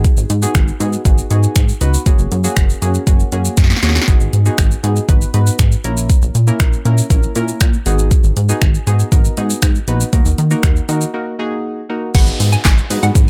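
A punchy, funky analog bass with a plucky, wave-folded bite pumps up front beside a deep house drum kit of deep kick, punchy snare, hi-hat, shaker, snaps, claps and crash, while soft, mellow chord stabs with chorus pump beneath in this energetic, bittersweet dance-pop excerpt, which breaks at 11.1 seconds before a drop at 12.1 seconds brings a bright, hollow square pluck, a background downlifter and a distant, crisp group handclap.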